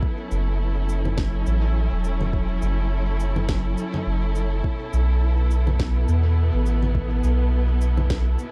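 Deep and spacious, this ambient dub passage is cut from a longer piece and moves at 104 BPM in 4/4 with a light 16th-note swing, set in F# minor and tuned slightly low to A4 = 438 Hz. A dark symphonic string section holds sustained chords throughout, its bowed ensemble sound lush and expressive with vibrato and a smooth top, shifting from F#m7 to B7sus4 at 4.6 seconds. Up front sits a soft dub sub bass, round and sustained with a fast attack and a tone between triangle and square wave, entering at 0.3 seconds and carrying the most weight in the mix. An overdriven electronic kick drum with a soft, produced character anchors the beat, while electronic shaker, congas and a woody snare, also overdriven, sit further back, bathed in dub echo. The drums carry the grit of being re-recorded in a small room, and the mix as a whole leans on echo rather than reverb, leaving a dry yet roomy sense of depth.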